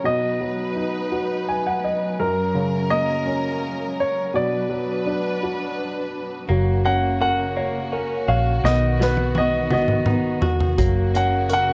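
This six-eight pop ballad, heartfelt and romantic, is a short cut from a longer piece. A clear, polished baby grand piano carries the melody up front, while a woody upright piano plays the accompaniment and adds a brief fill early on. Beneath them, a lush bowed string section with vibrato holds sustained chords. At 6.5 seconds a round, foam-muted fingered electric bass arrives dark and up front, joined by a clean, compressed electric guitar picking arpeggios recorded direct. An airy country drum kit with a punchy kick and medium-tuned snare enters at 8.7 seconds with a fill, as the harmony moves between B and F#, with one turn to B minor, under light reverb, small room ambience and the worn, warbly pitch drift of old cassette tape.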